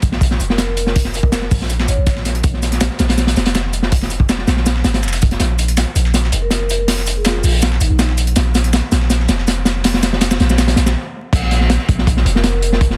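A dark, atmospheric drum and bass excerpt at 162 BPM opens with a deep, sine-toned 808-style bass sitting up front beneath a punchy, acoustic breakbeat kit with dark cymbals and a rolled-off top, layered with a quieter, gritty sampler-style kit of high-pass-filtered snare, hats and shaker. A mellow vibraphone played with soft mallets drifts in the background from 0.5 seconds in short, metallic, ringing phrases trailed by dub echo, over chords moving from Bb5 to Fsus4. The build-up carries a long drum fill into a brief stop at 11.0 seconds before the drop lands at 11.3 seconds, set in a small room with vinyl crackle and a dense, heavily limited master.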